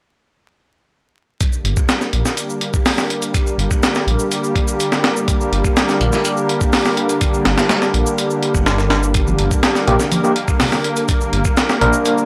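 An overdriven tine electric piano, barky and up front, arrives at 9.9 seconds with bright stabs run through a combo amp, colored by a medium tremolo and analog delay. This short funky, playful breakbeat excerpt sits at 124 BPM in a straight 4/4, resting on G minor throughout. From 1.4 seconds a compressed, sampler-style breakbeat kit leads the groove with a thumpy kick, medium-tuned snare and hi-hat, its tape-warmed sound re-recorded in a small room, while an analog electronic shaker ticks along in the background. A thick, menacing detuned saw bass and a lush unison pad with chorus and sidechain pumping fill out the low and middle registers in long, sustained tones. Compressed, saturated congas played with soft hands slip into the background at 9.3 seconds. The whole mix carries a dry, gritty hardware character with transformer saturation, vinyl crackle and only a light digital ambience.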